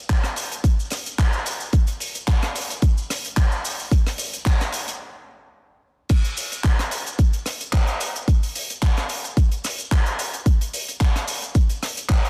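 Groovy and feel-good, this short nu-disco cut from a longer piece moves at 110 BPM in 4/4 with a light swing on the sixteenths. It is built entirely from drums: a layered, punchy electronic kick drum, re-recorded in a small room and placed up front, alongside a tight funk drum kit that brings cabasa, crash cymbal, handclaps, hi-hat and rim click. The acoustic kit has a mid-forward, small-room character and also sits close to the listener, noticeably lower in level than the kick. The first half is a build-up that reaches a stop from 5.0 to 6.1 seconds, and then the drop lands at 6.1 seconds and carries the groove to the end. The sound is dry, with little reverb, and comes through a dense, heavily limited modern master.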